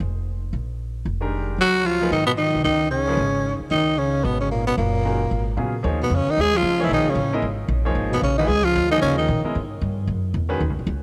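A growling tenor saxophone carries the melody in this hypnotic, intense jazz excerpt, its raspy, gritty tone shaded with breathy subtone, vibrato, soft attacks and scooped notes, close-miked and up front. Beneath it, a warm bass clarinet plays a second line in a lower register, both entering at 1.6 seconds and stopping at 9.4, its warm subtone and vibrato adding weight to the lead. The pizzicato upright bass is woody and thumpy with steel-string bite, sitting up front from the very start and running through to the end. A clear, natural grand piano supplies accompaniment just after the bass begins, filling the middle of the texture. The swung feel rolls over suspended chords, and a moderate plate reverb gives the whole a roomy glow as the passage moves from its opening section into a second one at 5.8 seconds.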